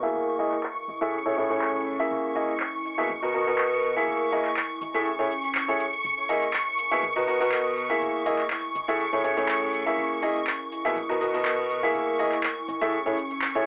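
Feel-good and joyful, this piano house excerpt sets a clear, up-front baby grand piano riff, low-pass filtered with a filter sweep, tape saturation and analog delay, over shimmering vintage string-machine violin chords, a warbling, nostalgic lo-fi pad with chorus and reverb in the background, a punchy, funky plucky analog bass sitting low in the mix, and tape-softened electronic shaker and handclaps under their own filter sweep, all cycling through F#13, Amaj7 and Bmaj7 in a damp little booth with a cassette, telephone-like sound.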